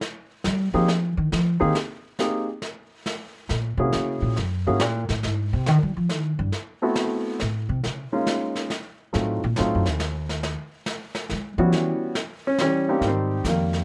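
Jazz piano trio in a swinging 3/4 lilt, where the woody, growly pizzicato upright bass takes an up-front solo over a vintage brush kit with a punchy kick and rolled-off top, while a warm, present baby grand drops out between 4.8 and 6.8 seconds before returning, all in a dry room.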